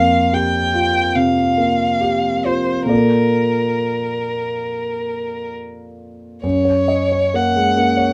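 Violin and concert grand piano begin together in this short, dreamy classical duo with an impressionist color, moving in a relaxed 4/4 with a freely breathing rubato feel. The violin carries the melody in its middle-upper register, a single bowed voice, smooth and even with a vibrato that sits up front. The piano supports it from a deep bass up into its middle range, intimate and natural, with long sustain and the sound of its action audible. The harmony drifts from a suspended chord to a luminous Bbmaj7 at 2.9 seconds, then shifts to F# as a new section opens at 6.4 seconds. A moderate studio ambience and a dark, warm production surround the pair, and the passage is cut from a longer piece.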